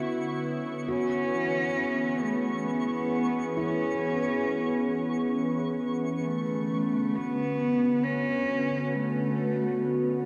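In a straight 3/4, this weightless, serene ambient excerpt opens on a warbly, detuned tape-like pad holding sustained chords up front with chorus and phaser, beside a string-like bowed drone in the background and a twinkling granular shimmer that fades in, both dropping away at 6.3 seconds, while from 0.9 seconds a woody, dark cello with vibrato carries the melody through diffuse delay and a very quiet felt-muted upright piano plays mellow arpeggios, the whole set inside a cavernous cathedral reverb.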